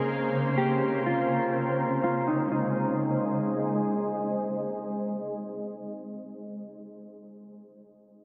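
A shimmering, ethereal pad sits up front, holding detuned, slow-blooming chords with an octave-up shimmer and a granular grain, while a dark, clean electric guitar plays a fingered melody until 3.9 s. Warbling, nostalgic lo-fi synth keys arpeggiate in the background through chorus, phaser, diffuse delay and a filter sweep over the first 2.5 s, and a very quiet reversed texture swells beneath everything with a bright, granular glow. This blissful, dreamy half-time hip hop fragment moves from Bbmadd9 to Ab at 2.5 s, with the whole mix soaked in huge ambient reverb and softened by a low-pass filter.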